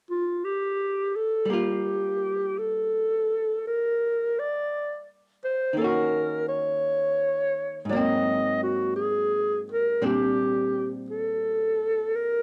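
A slow 56 BPM swing in 4/4, with eighth notes lilting at a 68% swing, sets the pace for this intimate, smoky jazz ballad in G minor, cut from a longer piece. A mellow clarinet opens alone at 0.1 s, close-miked and up front, playing the solo melody in a jazz style with vibrato, breathy subtone and scooped notes, its sound carrying a cassette-tape softness and a plate reverb sheen. At 1.5 s a miked and amplified archtop guitar joins in accompaniment, its clean, picked hollow-body tone dark and electric, also up front and touched by plate reverb. The guitar moves through Gm9, Ebm7, Ab9 and Bb69 beneath the clarinet, giving the harmony a hushed, late-night colour. A modest small-room ambience and the homespun character of a cassette recording keep the whole performance close and personal.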